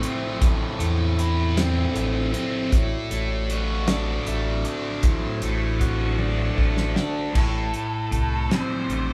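Set in a slow 6/8 at 52 BPM with a straight feel, this psychedelic rock passage in A dorian moves with a hypnotic, mysterious sway, its damped 70s drum kit sounding dry and acoustic with a medium-tuned snare, tight kick, hi-hat, crash and toms, and a drum fill from 6.2 to 7.3 seconds. Up front, a bright, double-tracked fuzz guitar plays a compressed, picked riff colored by a phaser, while an overdriven, punchy fingered bass enters at 0.4 seconds in the low register. Behind them a piping, scooped tonewheel organ holds sustained chords through a slow rotary speaker with light overdrive, sitting in the background until 7.3 seconds. The harmony moves from Am to Dadd9/A and back to Am, and at 7.4 seconds a dark octave-fuzz lead guitar takes up a short picked melody. The band plays live together in one large studio room with moderate reverb, giving the piece the feel of a section cut from a longer piece.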